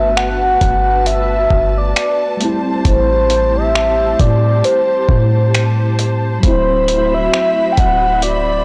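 Sensual and moody, this contemporary R&B cut from a longer piece sways with a 16th-note swing over Gmaj9, Am7 and D13 chords. A mellow, horn-like synth lead carries the melody, its round, wave-folded tone softened by a gentle attack, a filter sweep, vibrato and chorus. Beneath it, a clean tine electric piano with ensemble chorus plays the accompaniment, while a lush studio string section holds intimate, bowed sustained chords with a smooth top. A deep, soft 808-style bass sits up front, dark and decaying, and a gritty, tape-warm sampler-style soul kit enters at 0.2 s with finger snaps, hi-hat, a thumpy kick and a softly clipped snare. Light reverb surrounds the blown-out, overdriven recording.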